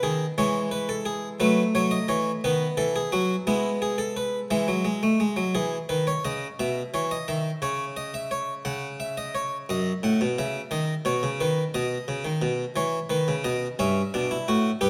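Classical baroque-style three-part fugue for solo harpsichord, lively and joyful, moving at 58 beats per minute in dotted quarters through a straight 12/8. The Flemish-style instrument, on a single set of strings, sits up front with a close, dry, round and full plucked tone that spans F#2 to F#5, while a moderate stage reverb adds air around it. Cut from a longer piece, the music opens in E and shifts into a second section at 5.5 s, wandering through C#madd9 and D#m/F# before settling on Em/G.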